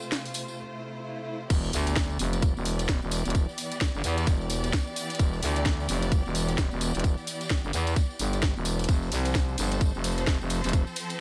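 This gritty, bouncy bass house excerpt opens on lush, bowed studio strings holding sustained chords with a sidechain pump, joined by dark, worn grand piano stabs, a jingly, close tambourine and a barely audible, warbling lo-fi tape pad, while an overdriven garage kit with a cracking snare, hi-hat, crash and ride enters at 0.1 seconds. After a brief break with a quiet electronic swell, the drop lands at 1.5 seconds with an impact, a tight, up-front overdriven kick and a thick, growling FM bass that is tube-saturated and pumping. The swung groove carries on under digital ambience until the kick and bass stop at 10.8 seconds.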